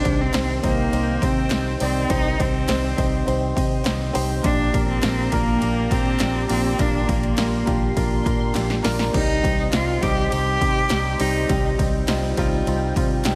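Piano-driven pop with an anthemic, hopeful mood and a big arena sound, cut from a longer piece, where an expressive bowed cello carries the melody with vibrato and portamento until 11.8 s over a clear concert grand piano touched with slapback echo, a detuned, evolving sawtooth pad with chorus in the background, a round, foam-muted vintage electric bass, a punchy, layered house drum kit that plays a fill at 8.6 s, and very quiet, distant group handclaps.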